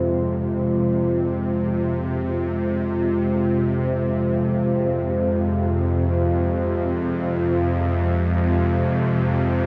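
A tense, string-like bowed drone with vibrato sits up front in the low register, holding steady from 0.0 to 9.7 s in this dark, desolate piece of dark ambient. Over it, a deep, moody pad with a warbling, vintage chorus sustains a single minor chord across the same span. Both float in a huge, wet reverb with a cassette-tape grain, in a short passage cut from a longer piece.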